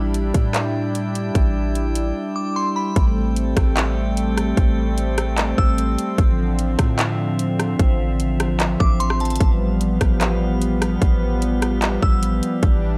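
Atmospheric cloud-rap hip hop with a spacious, hazy mood, moving in a half-time feel. A smooth, full-bodied analog pad built from detuned sawtooth waves holds sustained chords up front, its chorus-treated sound pumping from sidechain compression, while a deep, boomy 808-style bass with a sine core and a noise layer sits alongside it. An electronic trap kit of hard-clipped kick, metallic hi-hats, handclaps and rim clicks drives the track up front, with a short break from 2.2 to 3.0 seconds. A crystalline FM synth bell carries the melody in brief high phrases, first at 2.4 seconds, coloured by chorus, tremolo, a low-pass filter and tape echo. Farther back, a calm glass-harmonics texture of sine tones drifts with slow-attack overtones and its own reverb, and the dry, gritty recording keeps the mix close.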